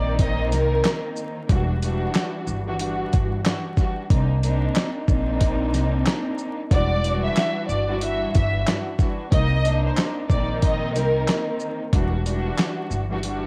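Bowed strings and a dark, woody pizzicato upright bass open this moody, reflective boom-bap hip-hop excerpt at 92 BPM, joined at 0.2 seconds by a gritty, compressed, up-front sampler-style drum kit of thumpy kick, fat snare, handclaps, hi-hat and shaker swinging its 16ths, while an intimate sul tasto string section with soft-attack vibrato moves from an opening Cm7 into alternating Em9 and Cm9 chords through cassette-tape filtering and vinyl crackle, and a lush, focused violin section melody with analog delay appears briefly at the start and returns at 6.7 seconds.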